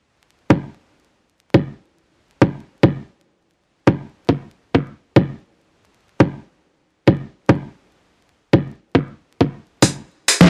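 A thumpy, overdriven electronic kick drum sits up front through nearly the whole of this short glitch hop excerpt, running from 0.5 to 10.0 seconds with a compressed, pitched-down, sampler-style punch and a high-pass filter shaping its low end. The feel is gritty and funky, set in 4/4 with a swung sixteenth-note lilt. A digital ambience of vinyl crackle hangs in the background, adding a dusty texture beneath the drums. Only at the very end, from 9.8 seconds, does a boom bap sampler-style kit break in with hi-hat and a medium-tuned snare, overdriven, gritty and pushed forward in the mix. The whole passage plays as a single section cut from a longer piece, built almost entirely on that distorted low thud.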